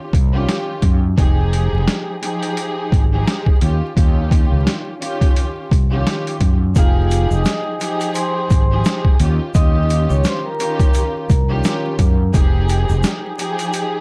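A dark, filtered string section sets a lush, woody bed from the start as gritty, overdriven sampler-style drums with a thumpy kick and a round fretless bass arrive up front in this moody boom-bap hip-hop excerpt in F minor at 86 BPM with a swung 16th feel, moving between Eb9 and Fm9 under vinyl crackle and dry, warm production until a mellow, airy soft-mallet vibraphone melody and a grainy tube shaker in the background enter at 6.8 seconds.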